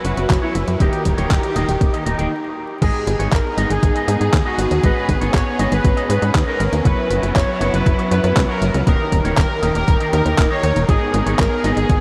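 A straight italo disco groove, cut from a longer piece, pairs a thumpy, overdriven electronic kick entering at 0.3 seconds with a sampler-style drum machine's crash, handclaps and hi-hat, while a tight, punchy sequencer bass with sawtooth bite, ring modulation and tube saturation drives up front. A bold, fat analog synth brass carries the melody through chorus and analog delay over bowed, focused studio strings holding sustained chords, as a twangy, clean electric guitar with an envelope filter adds picked stabs through delay. After a brief stop at 2.3 seconds, the bittersweet, nostalgic music moves to G#m, all of it soaked in a dreamy, huge ambient reverb with vinyl crackle.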